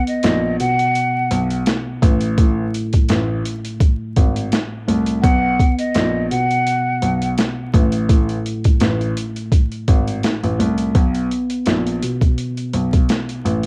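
A swung 84 BPM boom-bap groove in 4/4 drives this soulful, nostalgic hip-hop fragment, built on a pitched-down, compressed sampler-style kit with a thumpy kick, a high-tuned snare and hi-hats, all gritty with overdrive and cassette-tape color and sitting up front. Beneath it, a dark baby grand piano plays the bass line in a mellow, natural register with short sustain, while a worn, slightly out-of-tune tine electric piano adds clean, direct accompaniment through high- and low-pass filtering. Out front, a breathy concert flute carries the melody with warm vibrato, tongued attacks and lifted highs, its expressive line filtered and tape-tinged before it falls away at 7.3 s. The harmony moves between a B5 chord and unharmonized stretches, and a new section arrives at 10.9 s. Vinyl crackle and the character of a home cassette recording wrap the whole piece in a lo-fi, lived-in atmosphere.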